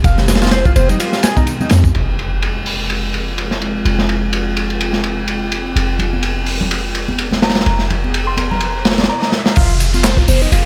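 A crunchy, up-front breakbeat drum kit with a tight kick, dark cymbals and a rolled-off, gritty top drives this raw, energetic breakbeat excerpt in F minor at 126 BPM, swung on the 16ths, over a deep, boomy 808-style bass and a moody, detuned ambient pad carrying 12-bit sampler grit and sidechain pumping. A screaming, guitar-like overdriven synth lead with phaser and dub echo plays its riff at the start and again at the drop at 9.6 seconds, joined in those moments by overdriven tambourine and handclaps, while bright, soft-handed congas sit in the background. An impact lands at 1.9 seconds, a riser and a drum fill build toward the drop, and a soft, pure FM bell with a small-speaker tone adds a brief melody from 7.4 seconds, all within a light reverb.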